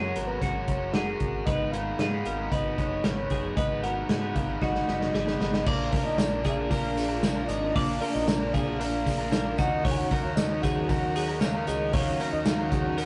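Bittersweet and wistful, this jangly indie pop excerpt moves at 115 BPM in a straight 4/4, cut from a longer piece. A soft, round synth lead with a sub-octave layer, chorus and vibrato carries the melody over a biting overdriven guitar and a bright, twangy twelve-string electric guitar spinning clean arpeggios. A fingered electric bass sits dark and punchy underneath, while a vintage drum kit with dark cymbals and a punchy kick plays up front from 0.2 seconds, rolling into a fill before the harmony shifts. At 5.7 seconds a shimmering string machine of violins enters with sustained ensemble-chorus chords in the background, and a jingly tambourine joins softly at 6.2 seconds. The whole track has a rough rehearsal-room character, with tube saturation, a dulled top end and a short, wet studio reverb.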